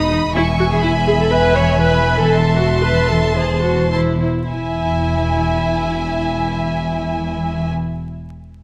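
Quick classical-period string orchestra music, graceful and lively with a rubato feel that slows over the first 4.5 seconds, cut from a longer piece: an intimate, soft-attacked violin section carries the high sul tasto melody over a focused, up-front second violin line, smooth and even violas, an expressive cello section holding a low E, and a dark double bass section with vibrato and portamento, all moving from E to Am/E and back to E at 4.5 seconds within a moderate scoring-stage reverb and a layer of vinyl crackle.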